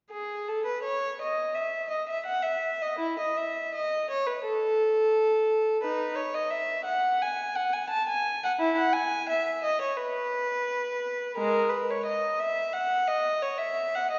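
This classical excerpt is a baroque-style suite movement for unaccompanied violin in E major, moving at 86 BPM in 4/4 with a rubato feel. The mood is radiant and dance-like, carried entirely by one player bowing a single violin that sounds from 0.1 to 14.2 seconds across a range from G#3 to A5. The violin has a rich, reedy gut-string tone played in period style with light vibrato, and it sits up front in the mix. Around it, a wet scoring-stage reverb with a 2.1-second decay places the listener further back in the room, and the top end is rolled off above 7.4 kHz. The passage is cut from a longer piece and holds to a single section throughout.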